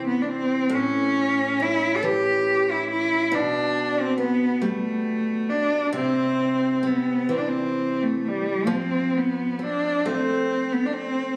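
In an uneven, rubato 6/8 lilt at about 45 BPM, this haunting, mournful Celtic folk fragment, cut from a longer piece, sets an up-front bowed cello, rich and focused with vibrato and a smooth top, singing the melody over a softer, warm picked steel-string acoustic guitar with an auditorium feel, both playing throughout the 11.4 seconds as chords move from C through A, Gadd9/B and back to C before settling on F, all heard in moderate recital-hall reverb captured by a phone in the room.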